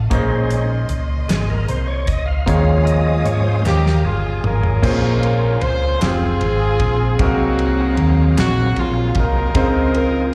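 A slow, straight 6/8 gospel sway carries this hopeful, jubilant live cut, where a gritty overdriven organ with fast rotary speaker solos over bright grand piano with slapback echo, a round, dark hollow-body bass up front, a soul drum kit with a tight kick that closes its opening phrase with a fill, very quiet handclaps and lush strings that drop out at 4.8 seconds, while a tight horn section with light vibrato takes the melody from 3.7 seconds, all heard through a venue's PA with recital-hall reverb.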